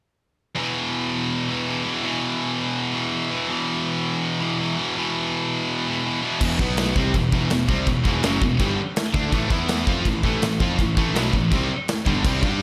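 A pair of bright, high-gain electric guitars opens at 0.6 seconds with a relentless heavy metal riff in E minor at 164 BPM, one of them carrying a slapback echo. At 6.4 seconds a double-tracked, compressed overdriven guitar joins in the background alongside a growly fuzz bass and a big acoustic rock kit with a punchy kick, medium-tuned snare and bright china and crash cymbals. The chords move among E5, B5, Em, A5 and C5, and a lush hall reverb gives this short cut from a longer piece a big arena sound.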